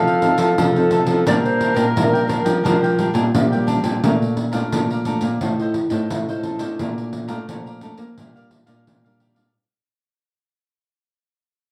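Samba and choro in a lively, joyful mood, this excerpt opens with a mellow, classical-style clarinet melody that ends at 3.3 seconds over a breathy jazz tenor saxophone second line with vibrato, subtone and scooped notes that stops at 4.0 seconds, while a bright, crisply picked cavaquinho, two fingerpicked nylon-string guitars with audible finger squeak (one comping, the other carrying the bass), and a jingly, hard-handed pandeiro heard distantly in a large room keep going through a fade-out that begins at 4.0 seconds, all set back in a wet studio reverb.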